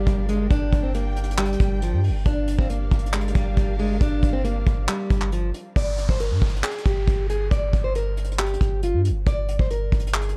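A half-time trap groove rides on a soft brush kit with a tight kick, hi-hat and handclaps, set up front beside a deep, sine-toned 808 bass whose long notes decay mellowly, in this brooding, eerie hip hop excerpt. A boxy, fingerpicked parlour steel-string acoustic guitar carries the melody throughout. A lush bowed string section holds expressive, close chords with vibrato until 5.7 s, and an electronic downlifter slips in at 5.8 s as the harmony moves from Gm7 to Gm, all within a small room and a dark, warm production.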